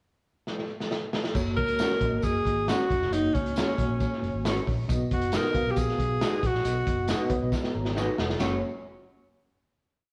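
A cassette-tape recording and a wet stone-room reverb frame this joyful, danceable 1960s-style soul piece, where a crunchy breakbeat kit with dark cymbals opens with a fill at 0.5 seconds, then round, foam-muted electric bass with chromatic approach notes, reedy electric piano pushing chords through fast tremolo, jingly tambourine on every beat in the background, twangy, slightly broken-up guitar chops on the backbeat and an up-front tenor saxophone with clear vibrato playing call phrases from 1.6 to 7.3 seconds carry the verse before the band lands on a final chord at 8.4 seconds.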